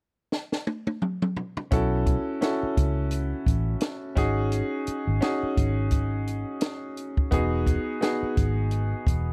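Lush 1970s-style soul with a romantic, smooth mood and a gentle 16th-note swing, this dry, close fragment opens at 0.3 seconds with a fill on a compact cocktail drum kit with a high-tuned snare and punchy kick, and at 1.7 seconds a clear, up-front baby grand piano and a dark, round, foam-muted fingered electric bass join over sus chords that settle onto Emaj7.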